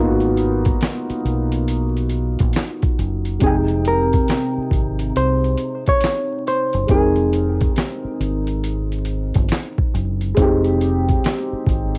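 A swung 69 BPM lo-fi hip hop groove in F minor opens at 0.0 s, and at 0.2 s a dusty, sampler-style kit of thumpy kick, fat snare, hi-hat and handclaps enters, carrying 12-bit grit and cassette-tape saturation. Beneath it, a deep, round fingered electric bass holds the low end, and a dark, woody upright piano, slightly detuned with audible action noise and a muffled, tape-worn tone, comps on Abm7 before moving to Fm7. From 3.4 s to 8.2 s a clean, hollow-body jazz guitar plays a filtered melody, and the whole hazy, nostalgic excerpt sits in light reverb with vinyl crackle and a home-cassette feel.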